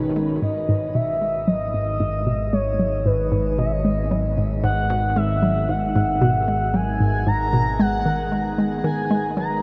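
Expansive and hypnotic, this cut from a longer piece of ambient, sequencer-driven space music moves at 114 BPM in G# minor, where a bright, resonant pad fades in with sustained chords under chorus and shimmer reverb, a hollow, bouncy square-wave pluck repeats its riff through tape echo, a fat, tube-saturated analog bass holds G#1, a very quiet pulsing gated texture appears only for the first 0.5 seconds, and a smooth, dark, up-front synth lead with vibrato carries the melody from 0.4 seconds, all bathed in a huge ambient reverb.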